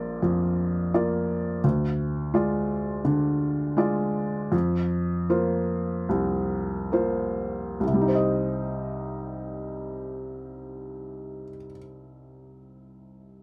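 Classical and reflective with a longing cast, this brief cut from a longer piece features a felt-muted upright piano, its tone soft, mellow and intimate with a thin felt edge, playing freely in rubato and slowing down from 0.2 to 7.8 seconds as the harmony moves from Bb through Ddim and Fsus4 to settle on Cm, all captured up front by close, detailed microphones in a dry, natural room.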